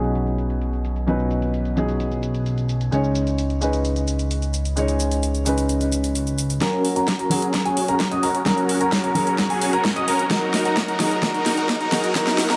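A soft, felt-muted upright piano opens this anthemic, euphoric festival progressive house passage in F# major at 130 BPM. Its short, mellow notes pump against the sidechain and trail a tape echo. Beside it sit a fat, detuned sawtooth bass and an up-front big-room drum kit of metallic hats, shaker and a huge snare, all under a filter sweep. The chords move from Badd9 to C#sus2. At 6.6 seconds the bass drops out, the harmony lands on F#, and a build-up with a drum fill begins. A lush, bright supersaw riff and a present grand piano playing high arpeggios enter there, both pumping, filtered and echoed with sweeps of their own, while a punchy, layered electronic kick sits very quietly beneath. A faint riser enters at 9.8 seconds, and the harmony shifts to D#m at 10.3 seconds in this cut from a longer piece, all set in light reverb.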